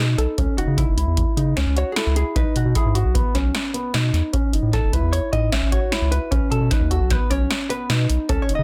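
This is a short excerpt of progressive instrumental band music in an uneven 5/4 meter with a straight, driving feel and a bright mood. A vintage hollow-body jazz guitar takes the lead throughout, its clean, picked electric tone dark and compressed. Beneath it, a dark grand piano plays mellow, boxy arpeggios through a delay, while a round analog bass sits up front with a deep, sine-like tone and a fast attack. An electronic analog drum machine enters at 0.2 seconds with a dry, punchy snare, a deep kick and metallic hats. The harmony moves from F#m13 through Eadd9/B and A to Badd9, and the dense, heavily limited mix carries little reverb.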